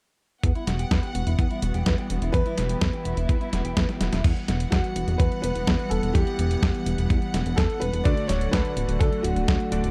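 This melodramatic, danceable italo disco excerpt opens with a gritty, thumpy electronic kick, a detuned 8-bit drum machine playing crash, hi-hat and snare, a glossy chorused synth bass up front, and sul tasto studio strings holding sustained chords with vibrato. Alongside them, a dark, slightly broken-up electric guitar plays arpeggios through chorus, a low-pass filter and tape echo until a drum fill near 4 seconds. From 2.3 seconds a clear, boxy concert grand piano with audible action noise carries the melody through tape echo, and from 8.1 seconds a vintage electric grand with clangy bass adds stabs as the chords move from Emadd9 to D, all in a dry, close 1970s-style studio sound.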